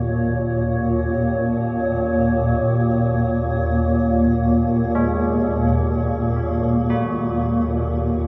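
Desolate and cavernous, this dark ambient drone in Eb minor drifts in free time, a short cut from a longer piece resting on a single Ebm7 chord across its 8.3 seconds. Up front, a tense, detuned swarming drone built from sine and triangle tones with ring modulation churns low beneath a blurred, mellow granular cloud pad of wave-folded sustained chords, both parts slowly evolving in their own built-in reverb. Bronze carillon bells struck by a worn iron clapper, with a ringing minor-third overtone and a vintage, band-limited tone, fade in through delayed arpeggios from the start, everything suspended in an enormous, wet space that trails for seconds.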